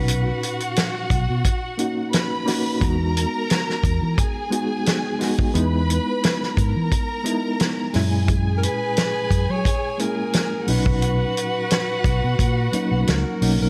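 A breathy alto saxophone phrase opens this lush, silky 1970s-style soul excerpt at 88 BPM. Beneath it sit a reedy, slightly out-of-tune electric piano with fast tremolo, an amped fingered bass, and a bowed string section with vibrato and portamento, while a tight soul drum kit with a fat snare and punchy kick sits up front. The saxophone stops at 0.6 s and returns at 8.6 s with subtone, scooped notes and a close, whispered intimacy, as the chords move from Bmaj7 through Emaj7#11 and F#7 to Bmaj7 in a light small-room reverb.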